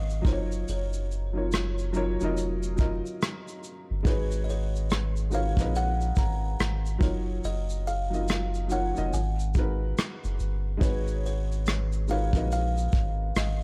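Vinyl crackle and small-room ambience frame this reflective, hazy lo-fi hip hop excerpt, where a buzzing, woody kalimba carries the melody through tape echo over a dark, slightly detuned upright piano with audible action noise and a worn cassette tone, while a round, deep dub sub bass sits up front alongside a vintage brush kit that joins at 0.1 seconds with a punchy kick, rim click, hi-hat and shaker in a swung groove.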